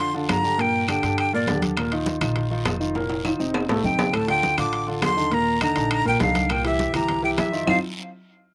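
This salsa excerpt moves at a brisk, straight 4/4 with a joyful, sunny mood, cycling through chords such as Bb, Gm, F7 and C7. A breathy, bright jazz flute sits up front with vibrato and a crisp, chiffy attack, plays the melody in its upper register, drops out after 1.6 seconds, and returns at 3.8 seconds. A warm concert grand piano, also up front, supplies full accompaniment with deep bass, while a dark, pizzicato upright bass on steel strings adds a woody low end beneath it. The percussion bed combines resonant congas struck with hard hands in the background, ringing metal-shell timbales with a small-room sound, a raspy guiro, and vintage, band-limited claves that enter just after the start. A drum fill runs from 3.0 to 4.1 seconds, and the full band closes on an accent at 7.7 seconds. The sound is close and dry, with little reverb and a gently rolled-off top end.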